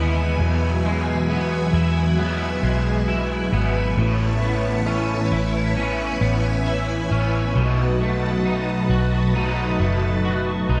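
A dark, softly reverberant mix frames this floating, blissful dream pop fragment, where an overdriven semi-hollow guitar shimmers with harmonic tremolo and analog chorus while a second, twangy guitar at the edge of break-up plays chorused arpeggios trailing tape echo. Above them, a vintage string machine holds bright, slow-attack violin chords. Below, a round, foam-muted picked bass sits up front as the harmony moves from Eadd9 to Aadd9 and on to B7. A very quiet fingerpicked banjo adds a percussive glint from 4.9 to 7.8 seconds.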